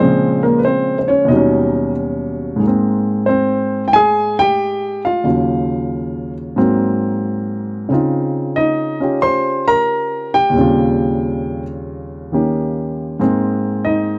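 Relaxed and sophisticated, this short excerpt of solo jazz swings in 4/4 on an intimate, up-front grand piano, its natural tone carrying audible action noise as it moves from Bbm7 and Eb7alt through lush harmonies like Abmaj9 and Dbmaj9 before settling on Abadd9 at 13.2 seconds, all captured in a dry, close 1970s-style studio sound.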